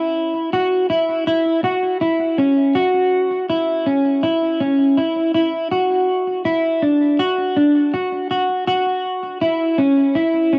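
Dreamy and blissful, this short dream pop cut at 81 BPM in a straight 4/4 features a lone clean electric guitar, dark and fingered, sitting up front in a wet studio ambience and steeped in lush chorus, tape echo and the soft grain of a home cassette recording as it moves from an opening passage into a new section at 2.8 seconds.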